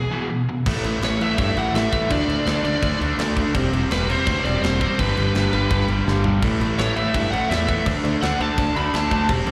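A straight 4/4 pulse at 167 BPM drives this upbeat, energetic punk rock fragment. The overdriven, double-tracked rhythm guitar riff and the biting lead melody ring out together from the start, with the growly picked bass and tight metal kit, with its bright cymbals, crashing in at 0.7 seconds over chords moving from A5 through D5, C/E and G, and a quick drum fill lands at 6.1 seconds. The up-front, compressed riff carries slapback echo, the lead adds delay, and the whole band sounds like a live gig heard through a venue's PA, with small-room ambience and a recital-hall reverb.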